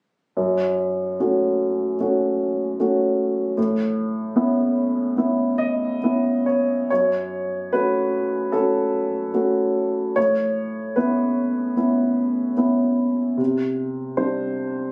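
A dark, woody upright piano plays alone and sits up front throughout this short neoclassical minimalist fragment, cut from a longer piece. The mood is intimate and peaceful, moving at a rubato 74 BPM in 4/4, with the piano spanning F#2 to D#5 and tuned slightly high at A4 = 441 Hz. The harmony rests on F#m and Aadd9, a pairing heard twice, before settling on Csus2 at 13.4 seconds. The instrument's mellow, vintage character comes through clearly. The sound was captured on a phone in the room, with a light club reverb and compression giving it a close, lived-in feel until the piano stops at 14.9 seconds.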